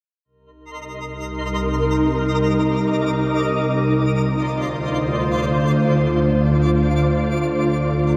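Ethereal and hazy, this free-time hip hop excerpt in C minor, tuned to A4 = 437 Hz, opens with a quiet twinkling granular texture with sparkling octave-up shimmer at 0.7 seconds, joined at 1.0 seconds by a mellow, up-front airy pad of detuned, wave-folded sustained chords with ensemble chorus, moving from Cm7 to Dm7 at 4.0 seconds, all bathed in a wet shimmer reverb with a 4.3-second decay.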